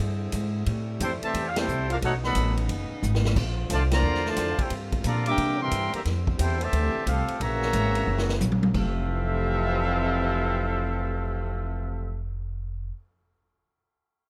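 A swinging 4/4 big-band groove drives this energetic cut from a longer jazz piece, with a woody, thumpy pizzicato upright bass up front from the start, a distant, roomy drum kit with a boomy kick entering at 0.3 seconds and adding fills while the band punches out accents, vintage trumpets with vibrato carrying the clear melody from 1.0 seconds over a punchy, tight trombone second line, and a saxophone section holding sustained chords in the background, all in a dry sound that stops at 12.9 seconds.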